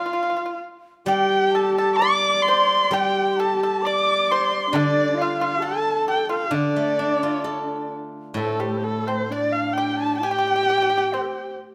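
A bowed erhu leads this graceful, wistful Chinese chamber piece, its dark, woody tone sitting up front with soft attacks, vibrato and gliding portamento as it carries the melody from G4 to D6. Beneath it, a horsehead fiddle on horsehair strings adds a husky, expressive second line, also bowed with vibrato and portamento, while a large bamboo dizi with its buzzing membrane offers a pure, crisp-edged voice in the background. A fingerpicked pipa contributes a dry, percussive counterline, and a steel-string zither, plucked with fingerpicks, joins at 1.1 s with ringing, silvery accompaniment in the lower range. The music moves freely at about 65 BPM in 2/4 in the D yu mode, with a new section beginning at 8.4 s. Close, detailed microphones capture each instrument clearly within a moderate recital hall reverb, and the recording is an excerpt from a longer piece.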